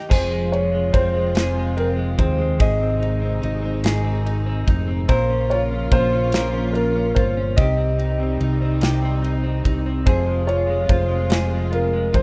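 A modern studio drum kit sits up front in this aching six-eight pop ballad fragment, its punchy kick, medium-tuned snare, ride and crash cymbals carrying an airy, polished small-room sound. The pace is a slow 48 BPM in F minor, and the harmony moves from Fm to Bbm at 5.1 seconds, then Cm and back to Fm. A round, amped fingered electric bass holds the low end close behind the drums, while a clean, picked electric guitar, recorded direct, compressed and double-tracked, supplies accompaniment from the very start. A dark baby grand piano sings the melancholic melody in a narrow upper range with mellow tone and long sustain. Underneath, a bowed string section plays sul tasto with soft attack and light vibrato, giving intimate sustained chords inside a rough home-demo mix with small room reverb.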